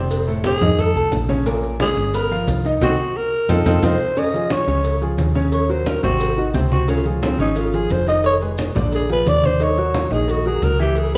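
Afro-Cuban jazz at 177 BPM in 4/4, driving and sultry, built on a smooth, vintage grand piano and a dark, round hollow-body electric bass up front, with low-tuned congas struck with hard hands in the background, a very quiet, distant cowbell and close, grainy maracas. A raspy, growling alto saxophone solos throughout from 0.5 seconds, its subtone, vibrato and scooped notes close-miked and gritty, while the band hits an accent between 2.8 and 4.2 seconds. The chords move from F7 through an altered G7 into Db, and a moderate recital-hall reverb gives this fragment of a longer piece a concert-hall air.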